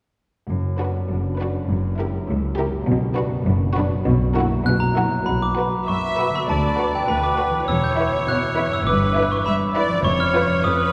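A dark, bell-like glockenspiel played with hard plastic mallets rings up front from 4.7 s, carrying the melody through this playful, whimsical film cue with a magical, mischievous mood. Beneath it, a fingerpicked concert harp spins ringing arpeggios while bowed double basses with expressive vibrato and an intense, bowed cello section carry the bass, a bright, lush viola section supplies accompaniment, and two violin sections divide into a focused melody in the background and a smooth, even second line. The harp and low strings begin at 0.5 s, with the violins and violas joining at 0.8 s, and the whole cue sits in a wet cathedral reverb, as if heard in a church or concert hall.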